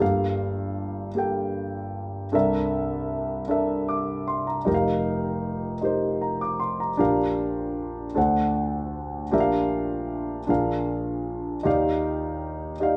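Gospel in 6/8 at a slow 52 BPM in Bb major, this soulful, reverent excerpt features a dark concert grand piano playing solo throughout its 13 seconds, spanning deep bass notes up to the high treble. The piano sits up front with a mellow, worn, intimate character and audible action noise, moving through rich chords such as Gm9, C13, F9sus4 and finally Ebmaj9 at 11.7 seconds. A moderate studio reverb gives the sound a natural, live-in-the-room feel, with the top end rolled off above 10.5 kHz.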